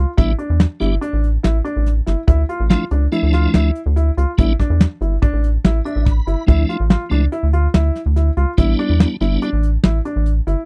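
A rubbery, hollow square-wave bass and an intimate baby grand piano playing arpeggios open this driving, intricate progressive instrumental in 5/4, joined at 0.2 seconds by soft brushed drums with a fat snare and a punchy kick, plus a piping, lightly overdriven tonewheel organ through chorus vibrato and a fast rotary speaker that adds a fill at 5.6 seconds, all cut from a longer piece and captured in a dry, close 1970s-style studio sound as A9sus4 and Dmadd9 chords alternate.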